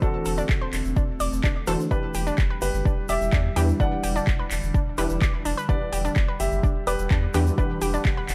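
A driving, dreamy progressive house excerpt at 127 BPM in E minor opens on a short-sustained grand piano melody with digital delay over a deep, up-front electronic kick, a round, dark analog bass, an evolving, phased wavetable pad in the background, nasal, chorused analog pluck arpeggios, lush, detuned unison pluck stabs and a grainy, dry egg shaker, with the house kit's handclaps and overdriven metallic hi-hats joining at 0.3 seconds as the bass, plucks, pad and hats pump to the sidechain and D7/E gives way to Em7 at 1.9 seconds.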